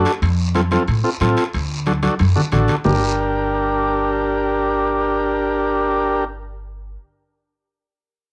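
A straight, danceable cumbia groove in 4/4 drives this passionate, cassette-hued home-recorded snippet, where a buzzy vintage combo organ with light vibrato sits up front over a woody, thumpy pizzicato upright bass, while a raspy guiro, ringing metal-shell timbales and bright, damped congas fill out the background; a drum fill arrives at 2.0 seconds before all three percussion parts drop out at 2.9 seconds as the harmony lands on G minor and organ and bass carry on briefly alone in moderate reverb.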